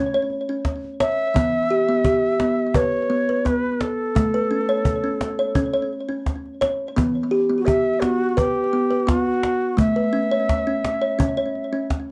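Heard through worn, warbling cassette tape with a wet small-room reverb, this meditative world excerpt has a gentle, lightly swung 4/4 feel over chords moving between A and Em. Up front, a plucked kalimba with a woody, hollow-box tone and short thumbnail attack plays delayed arpeggios, while an airy cedar flute carries the tongued melody with vibrato. A cajon with hard hands and faint snares joins at 0.3 s.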